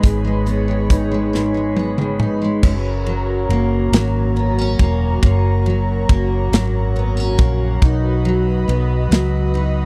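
Romantic and tender, this excerpt from a six-eight pop ballad moves at 46 BPM in 6/8, where a full-bodied, double-tracked picked steel-string acoustic guitar and a round, foam-muted vintage electric bass carry the harmony from G#m to F# and then B. A breathy pad with chorus holds soft, slow-blooming sustained chords above them, while a polished modern studio drum kit with a punchy kick and medium-tuned snare sits loudest and plays a fill from 1.3 to 2.6 seconds, leading into the second section. The sound is dry and close, in a 1970s studio style.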